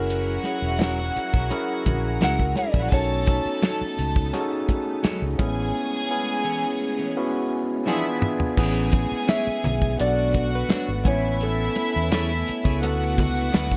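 Lush 1970s-style soul in A major at 85 BPM, smooth and warm, where a mellow, dark-toned electric guitar carries the melody with subtle chorus over a floating, sul tasto studio string section with slapback echo, a barky, gritty tine electric piano, a swirling phased string machine in the background, a round, foam-muted fingered bass and a damped, dry 70s drum kit up front, while very quiet ringing congas and a twangy clean guitar riff join from 0.4 and 0.8 seconds, and a drum fill at 7.9 seconds leads into a second section of extended chords in a small, lightly reverberant room.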